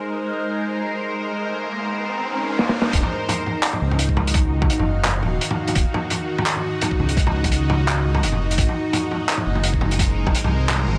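Half-time drum and bass with a cinematic, tense mood, this excerpt opens on a bright, string-like drone of detuned unison saws, shimmering with phaser, vibrato and its own reverb while sidechain pumping breathes through it, as a background riser builds from 1.1 seconds. A crunchy, gritty breakbeat kit with a rolled-off top enters at 2.6 seconds with a short drum fill that leads into the drop at 2.9 seconds, where a knocking, tape-warm electronic kick arrives alongside a deep, rumbling detuned saw bass that sits up front. The chords move from Abadd9 to Ebmadd9 and back to Abadd9 at 8.6 seconds, all in a small, lightly reverberant room.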